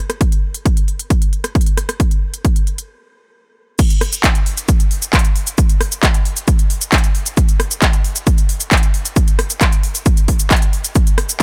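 Intense, hypnotic techno at 134 BPM in a straight 4/4, this dry excerpt pairs an up-front, heavy, overdriven electronic kick with a layered, distorted drum kit of crash cymbal, handclaps, smooth hi-hats, rim clicks and shaker, whose hats, cymbals and percussion pump with sidechain compression, breaking into a brief stop at 2.9 seconds before the drop lands at 3.8 seconds.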